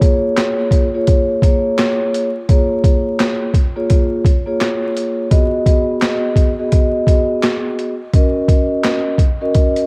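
A soft-mallet vibraphone and a gritty, pitched-down sampler-style drum kit of thumpy kick, high-tuned snare, hi-hat and handclaps open this short, tough and dark boom-bap hip-hop excerpt at 85 BPM in 4/4 with a 16th-note swing. The vibraphone plays a metallic, ringing accompaniment with its motor off, moving through A#m7, G#m7 and D#m7, its mellow tone filtered and put through cassette tape, while the compressed, overdriven drums sit up front as if re-recorded in a large room. A moderate spring reverb, a home-cassette sound and vinyl crackle give the whole thing a dusty, lo-fi cast.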